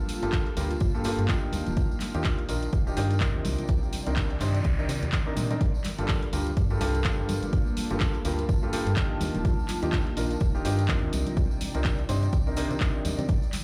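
Played through a big sound system in a bare room with a large studio reverb, this bittersweet, energetic piano house passage has a swung groove built on a punchy, up-front analog kick, a layered house kit of handclaps, hi-hat and shaker, and bright congas and tambourine struck with soft hands. A clear baby grand piano riff with sidechain pumping and dub echo moves through Gm9, Ebmaj9 and Cm9, over a round, dark FM bass that also pumps with sidechain. An ethereal, airy pad with ensemble chorus and phaser sits in the background, and a faint noise sweep passes through from 4.3 to 5.6 seconds.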